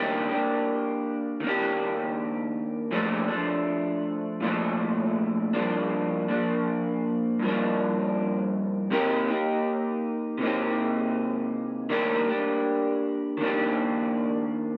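A lone electric guitar through a small old amp carries this short indie pop excerpt, its dark, slightly broken-up tone sitting up front in the mix. Picked from G2 to G4, it moves at an unhurried 80 BPM in a straight 4/4, with a wistful, mellow mood. A lush chorus and vibrato effect give the guitar a shimmering, unsteady quality. The chords pass from Ebmaj7 through Bbmaj7, Gm7 and Cm7 before returning to Ebmaj7 at 11.9 seconds. Light reverb and a digital ambience surround the dry, gritty, lo-fi sound, and the passage is cut from a longer piece, ending at 14.8 seconds.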